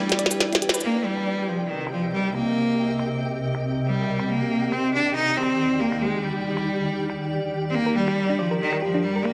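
A biting, vibrato-laden bowed cello carries the melody over a cloudy, detuned granular pad and a faint flickering grainy texture, as a glitchy drum kit of clicky hats, tiny snare, finger snaps and cabasa opens with a fill and a band accent at 0.7 seconds in this cerebral, melancholic IDM piece at 139 BPM in C minor with a light 16th-note swing. A round, tine-like thumb-piano pluck plays chorused arpeggios with tape echo, briefly at the start and again from 7.9 seconds. The harmony moves through Em7, Cm7, Ebmaj7 and Gm, with the pad's 12-bit sampler grit and a moderate plate reverb framing a dry, gritty hardware sound.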